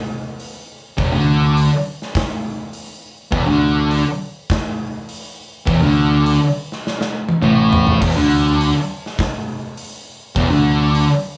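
A steady, straight 4/4 groove opens this hypnotic, sludgy stretch of stoner and doom metal, with the acoustic rock drum kit coming in at 0.4 seconds: bright cymbals, a medium-tuned snare, a tight kick, hi-hat, crash and toms, all set in a big room sound. At 1.0 seconds a thick, double-tracked fuzz guitar arrives up front with its heavy riff, its distorted, picked tone warm and full, while a growling picked electric bass joins at the same moment, its direct-and-amped, overdriven sound biting and forward in the mix. The harmony sits on a rootless E7sus4 before settling onto E7(no3) at 8.0 seconds, where the opening passage repeats. A drum fill from 6.8 to 8.0 seconds ushers in that return. Light reverb and a small room ambience frame the dense, churning sound of this passage, which is cut from a longer piece.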